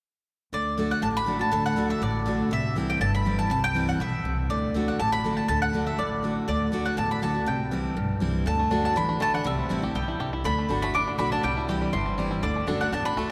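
Heard through a long, cathedral-like reverb in a church or concert hall, this joyful, virtuosic bluegrass excerpt races along at 242 BPM in straight 4/4 and D mixolydian, moving between D and C chords. The picked mandolin leads up front with a woody, double-strung melody, backed by a full-bodied dreadnought steel-string guitar, also picked and up front, and a bright pizzicato upright bass with steel strings, all starting at 0.5 s. At 8.5 s a mellow, twangy bluegrass banjo played with fingerpicks joins on melody, adding a percussive edge.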